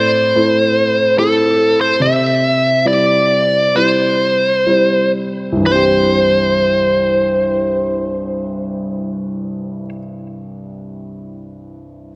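Heartfelt and hopeful, this pop fragment in a straight 4/4 sets a dark, distorted, bluesy electric lead guitar up front carrying the melody over a polished, present grand piano accompaniment, slowing through the first 5.6 seconds as the harmony moves from A minor to C, all bathed in a lush hall reverb, with the piano continuing alone after the guitar stops at 9.9 seconds until 12.1 seconds.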